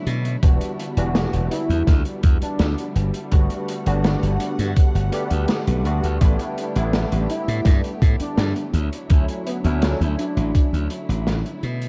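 An electronic kick drum thumps up front at a straight, unhurried 83 BPM in 4/4, alongside a muffled, lo-fi vintage kit of hi-hat and snare and a punchy, glassy slap bass, in this woozy, nostalgic vaporwave excerpt in E dorian that moves through Em7, Gmaj7, A9sus4 and Dmaj9. A barky tine electric piano with ensemble chorus comps over lush, bowed strings sitting in the background, while from 1.5 seconds a velvety sawtooth-and-triangle synth lead with vibrato, chorus and tape echo carries the melody. The production is dark and cassette-tinged with light reverb and studio ambience, and the excerpt fades out from 10.1 seconds.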